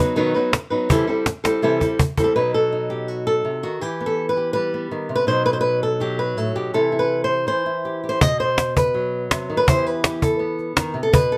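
A warm, fingerpicked flamenco guitar opens this dramatic, passionate piece in B phrygian dominant at 164 BPM, moving through B, C6 and Em. A snappy, dry cajon with snares joins up front at 0.4 seconds, plays a fill and drops out at 2.3 seconds, leaving the guitar alone until it returns at 8.2 seconds. Close, detailed microphones and light reverb give the sound an intimate presence.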